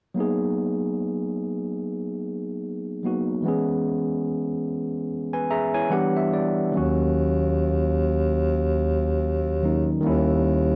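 Soulful and late-night, this slow R&B excerpt swings gently as an overdriven tine electric piano, bright and barky with a gritty combo-amp edge, lays down up-front chords moving from G#m9 through C#m7, Em7 and D#m7 to a closing D#7b9, adding a fill around 5.1 seconds. At 6.8 seconds a breathy bass clarinet enters as the bass, punchy and up front, singing single scooped notes with vibrato in a jazz style. Light reverb gives the room a soft glow.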